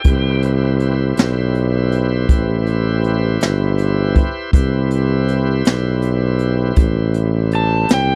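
Soulful and smoky, this slow blues excerpt in A minor moves at 54 BPM in 12/8, resting on an Am7 chord. A mellow, soft-attack tuba carries the bass up front beside a boomy, brushed jazz kit of hi-hat, kick and snare, while a bright, shouting tonewheel organ holds sustained chords through a slow rotary speaker and light overdrive. A dark, overdriven slide guitar appears only briefly, at 0.0 seconds and again from 7.6 seconds, in a dry, close 1970s-style studio sound.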